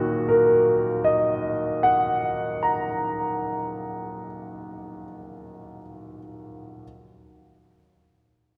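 Melancholic and mournful, this brief fragment of a romantic classical nocturne in Eb minor unfolds in a slow, rubato 12/8 at 26 BPM, with a clear, smooth grand piano of vintage character and long sustain sitting up front, ranging from Bb2 to Bb5 over an Ebm harmony and bathed in the wet reverb of a church.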